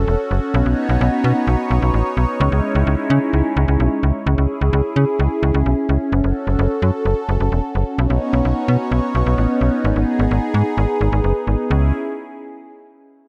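A snappy, slap-like FM bass with a metallic, digital attack anchors this cool, melancholic synth-pop excerpt at 129 BPM in C# minor, sitting up front beside a swirling, detuned sawtooth analog pad, treated with phaser and chorus, that holds sustained chords through a progression from F#m and Badd9 to C#m and G#m in a light reverb.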